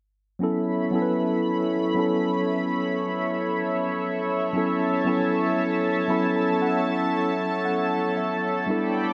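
Soaked in a huge ambient reverb, this dreamy, moody R&B fragment drifts at 58 BPM in 4/4, cut from a longer piece and resting on a B9sus4 chord. A mellow, clean tine electric piano sits up front as accompaniment and adds a fill from 5.6 to 8.7 seconds. A shimmering, retro pulse-width pad holds sustained chords with a slow attack and chorus, giving a bright, detuned, sensual glow.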